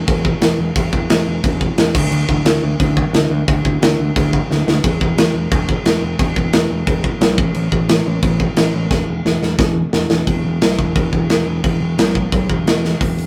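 A straight 4/4 punk rock beat from a big acoustic drum kit, with punchy kick, medium-tuned snare, hi-hat and crash cymbal sitting up front, carries this rowdy, rebellious fragment of a longer piece while a bright, growly picked electric bass holds the low end; drum fills break in at 4.5 and 8.9 seconds before the music moves into a new section at 10.3 seconds, heard in a rough rehearsal-room recording with light reverb.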